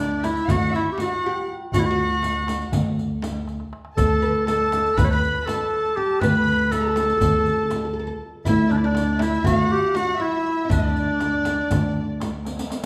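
Bathed in the reverb of a resonant recital hall, this festive, warm Turkish makam ensemble excerpt in D makam rast moves at 241 eighth-note beats per minute in 9/8, with a clear, vintage clarinet carrying the classical-style melody up front while a distant, reedy, gut-string violin section and a mellow, fretless, plectrum-plucked oud with a woody tone play second lines, a thumpy pizzicato upright bass holds a low D, and a clay-shell darbuka played with soft hands, a small bright frame drum and a riq with dark jingles fill out the background percussion, marked by drum fills at 3.5 and 12.5 seconds.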